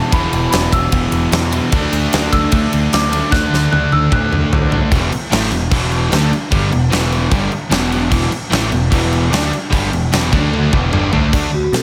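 A huge arena drum kit sits up front in this menacing, driving hard rock excerpt at 150 BPM in E minor, with a punchy kick, fat snare and bright cymbals carrying a hall sound, and fills rolling in at 3.3 and 10.5 seconds. A growling picked electric bass, direct and amped with overdrive, drives the low end while the harmony moves between E and D. Three overdriven electric guitars play the riff: a sludgy, warm one and a cranked stack one sit in the background, and a crunchy, double-tracked one stays very quiet beneath them. Over the top, a worn celesta with hard felt hammers plays a delicate, sweet, bell-like melody through tape echo, slightly out of tune and band-limited with a vintage character. The celesta stops at 4.7 seconds and returns only briefly at the close, and the whole mix sits in a light, small-room reverb.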